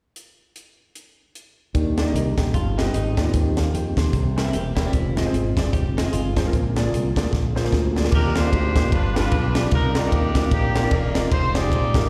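Uptempo gospel with a hopeful, reverent mood, where a crisp fusion drum kit with a punchy kick and dark cymbals opens alone before warm grand piano, a mellow tonewheel organ with fast rotary speaker sitting in the background, and a bright, punchy fingered electric bass join at 1.7 seconds, a clean picked electric guitar adds a brief second line, and after a drum fill a distant, roomy horn section takes the melody at 8.1 seconds, all heard like a live gig through a venue's PA with recital hall reverb.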